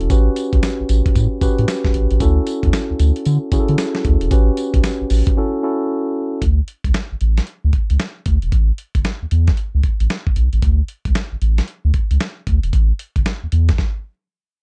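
A round, nasal analog bass with a filter pluck and fast attack anchors this flirty, bouncy new jack swing R&B excerpt at 114 BPM in D major with swung sixteenths. It sounds from the outset alongside a gritty, compressed sampler-style soul drum kit of thumpy kick, snare, hi-hat and tambourine, and a mellow tine electric piano that plays until 6.4 seconds. Everything is captured in a dry, close 1970s-style studio sound before a stop at 13.8 seconds.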